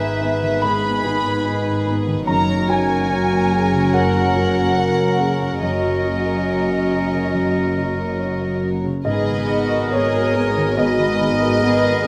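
Rubato at 71 BPM in 4/4, this bittersweet, moving cinematic film score fragment drifts through Emaj7/G#, F# and G#madd9. A violin section with light vibrato carries the melody, shadowed by a second, pure and floating violin section, an airy flute section, a mellow solo clarinet and a smooth-topped solo oboe. Beneath them sit a vintage-toned concert grand piano, a woody viola section, a French horn section holding sustained chords, a very quiet fingerpicked harp ringing in arpeggios, and a dark cello and double bass section bowed sul tasto, all blended in the moderate reverb of a scoring stage.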